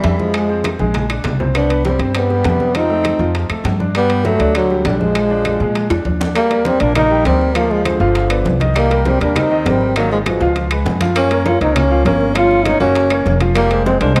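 A breathy, mellow trombone carries the melody up front with scooped notes, vibrato and slapback echo from the start of this sunny, danceable Afro-Cuban jazz excerpt, joined in the background by a soft-attack tenor saxophone second line and backed by natural baby grand piano, woody pizzicato upright bass, ringing low-tuned congas, round hard-hand bongos, dry metal-shell timbales and very quiet close claves entering at 0.3 s, with drum fills punctuating a small room touched by moderate echo chamber reverb.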